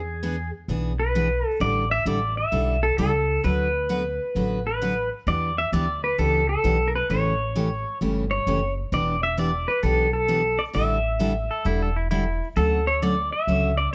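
A cheerful, down-home western swing excerpt at 131 BPM opens with a compressed pedal steel guitar carrying the melody in volume swells and slides over a woody, thumpy upright bass on gut strings, with a bright, full-bodied picked dreadnought acoustic guitar joining at 0.2 seconds with audible finger squeak. The swung eighths move through a country progression of E7, A7sus4, D6 and Em7 chords toward a closing Dmaj7. A twangy, scooped lap steel adds a brief second line between 11.5 and 12.5 seconds, all within a light reverb.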